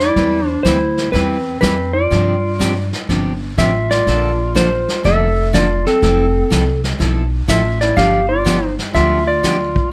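Country western swing at 123 BPM with a cheerful, down-home swing feel, this short section from a longer piece sets a dark, clean slide lap steel melody bathed in plate reverb over a soft-attack clarinet second line full of vibrato and subtone. A woody, thumpy pizzicato upright bass and a vintage brush kit with a punchy kick and rolled-off top carry the groove. From 0.2 s a bright, full-bodied picked acoustic guitar fills in chords moving from Cmaj7 through G7sus4, Bbmaj7 and Fmaj7 to G7, all in a light reverb.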